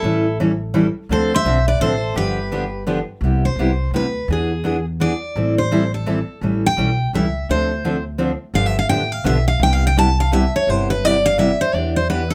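Playful and lively, this excerpt of acoustic string swing in the jazz manouche style moves at 169 BPM in 3/4 with a swung feel in C major. Two picked jumbo steel-string acoustic guitars sit up front: one carries the melody and takes a solo from 3.2 seconds, while the other plays full-bodied accompaniment over a pizzicato upright bass with a woody tone. A bright, double-strung mandolin adds a second line until 2.8 seconds, and light reverb surrounds the parts as the chords move through A7, Dm7, G7 and Cmaj7.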